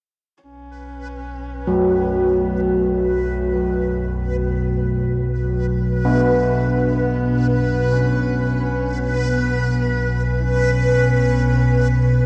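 A deep, rumbling drone sits up front in this dark ambient excerpt, entering at 0.8 seconds with a detuned, wave-folded edge and its own built-in reverb, swelling in slowly from the low register and sustaining long. Above it, old church bells arrive at 1.7 seconds with mellow, bronze, clangorous arpeggios whose padded strikes beat and ring, carried on tape echo. A reversed, swelling texture hovers higher in pitch, dreamy and granular with a bright sheen, while a single horsehead fiddle fades in from 0.4 seconds, its husky, woody, bowed tone colored by vibrato, portamento and tape echo. Everything drifts over a held Bsus2 at a slow 48 BPM in 4/4, and the mood is vast and ominous. The whole recording is bathed in an enormous, wet reverb and the worn, warbling pitch drift of old cassette tape, which dulls the top end and adds to the sense of something ancient and looming.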